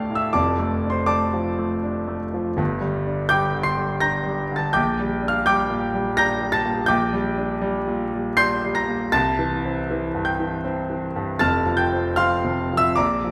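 A grand piano sits up front in a reverberant recital hall, its tone clear and polished, with the mechanical noise of the action audible beneath the notes. This short excerpt comes from a romantic character piece for solo piano in a lilting triple metre, played with a flexible, rubato feel. The harmony moves from Dm/F through Gm and Gm/Bb, reaches C at 9.1 seconds and settles on F at 11.4 seconds. The piano spans a generous range, from deep bass notes up to bright, high treble. The close, intimate presence of the instrument against the lingering hall reverberation gives the passage a warm, hopeful glow.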